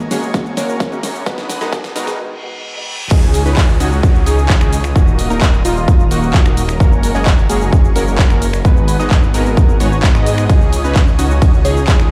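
Euphoric and anthemic, this festival progressive house excerpt at 130 BPM opens on a build-up. A dark, boxy baby grand piano, a sparkling, bell-like FM electric piano, a drum fill and a very quiet riser, reverse cymbal and downlifter sit over a filter sweep, while an airy unison pad, a thick detuned saw bass and a punchy supersaw stab pump to the sidechain beneath. At 3.1 s the drop lands, and a nasal, warbling unison lead plays arpeggios in the background alongside the tape-warm electronic kick up front and the big-room dance drum kit with a huge snare, handclaps, finger snaps, shaker and cymbals, both running since the opening seconds, as dub echo trails the stab, lead and keys over a stone-room sound and chords such as Gbadd9, Abm7, Dbsus2 and Ebm.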